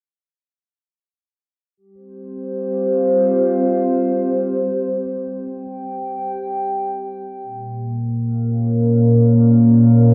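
A home cassette recording gives this drum and bass fragment a slightly worn, tape-tinged surface, wrapped in a wet studio reverb that lends the room a spacious feel. The only part is a dark analog pad, sitting up front and playing sustained chords from 1.8 s to 10.1 s. Its tone is deep and moody, built from detuned square and sawtooth waves with a sub octave and a wave-folded edge, softened by slow attacks, long releases and a subtle chorus. A filter sweep moves through the pad across its whole span. The harmony holds on Fsus2 before shifting to Bbm at 7.4 s, leaving the passage tense as it is cut from a longer piece.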